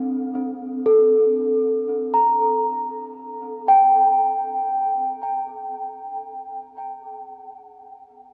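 Peaceful and luminous, this brief ambient fragment in free time, cut from a longer piece, features a solo celesta, delicate and bell-like with medium felt hammers, sitting up front with delay as it moves from Amadd11 to Gm at 1.4 seconds, all bathed in a huge reverb that rings for 8.3 seconds and the worn, warbling pitch drift of old cassette tape.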